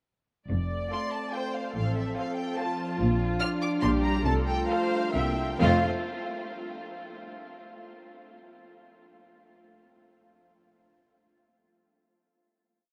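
A cheerful, graceful classical-period miniature for symphony orchestra in rubato 3/4 opens at 0.5 s with close, up-front French horn chords, a focused cello bass doubled by smooth double basses, and a rich viola counter-melody with portamento, before violins enter at 0.9 s with a lush, expressive, distant melody and an even second line, the whole orchestra sitting in a huge, echoing reverb that carries the final chord from 5.6 s.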